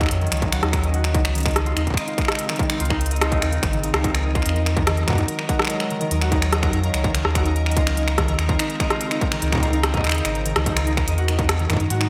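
A bright, 1980s-style digital production sits in a moderate, lush hall ambience across this 12-second excerpt of melancholic, intricate IDM in Eb dorian, moving at 145 BPM in a straight 4/4. A warbling, nostalgic pad built from detuned square, triangle and sawtooth tones holds sustained chords in the background, softened by chorus and phaser, while a fingerpicked concert harp rings out arpeggios through a low-pass filter and digital delay. Underneath, a round, sine-based sub bass sits deep and mellow with a touch of tube saturation, and a distorted electronic kick, re-recorded in a large room, drives the pulse until it drops out at 11.9 seconds. Up front, an industrial kit of crisp hi-hats, finger snaps and rim clicks carries gated reverb and delay, and a faint, tempo-synced gated texture pulses high in the background. The harmony cycles through Ebm9, Bbm11/Db, Dbmaj9 and Emaj9 twice.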